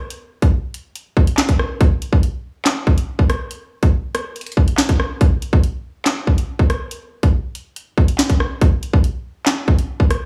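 A drill drum kit opens this dark, ominous hip hop fragment at 0.1 s and carries it through to 10.2 s. The tempo sits at 141 BPM in 4/4, but the half-time feel makes the groove land heavy and deliberate. The electronic, produced kit combines a hard-clipped kick, a sharp snare, bright hi-hats, handclaps and rim clicks, all placed up front in the mix. A light reverb and small room ambience give the drums a tight, close space. Cut from a longer piece, the passage stays within a single section, leaving the percussion to set a menacing tone on its own.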